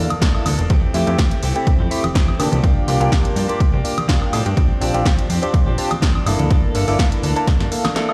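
A barky tine electric piano, lightly overdriven through a combo amp and coloured by phaser, opens this funky, groovy slice of filtered disco house at 124 BPM in G dorian. It plays chords beside a clean, picked electric guitar riff, recorded direct, whose compressed tone carries vintage 12-bit sampler grit, while a plucky analog bass with a sawtooth and square-wave bite and a fast, decaying filter pluck moves underneath. Nearly all of these parts sit behind a low-pass filter and pump with the sidechain, giving the groove its swung, breathing bounce on lightly shuffled 16ths. A punchy analog drum machine playing hi-hat, snare and woodblock enters with egg shaker and congas tucked band-limited in the background, and an up-front, tape-toned electronic kick joins them a moment later to anchor the rhythm section. The harmony cycles from a rootless Gm69 through Fmaj9, C9sus4 and Bb69 back to Gm69, and a drum fill arrives at 7.5 seconds as this cut from a longer piece closes. 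The mix carries little reverb, sounding as if played on a big sound system in a bare stone room.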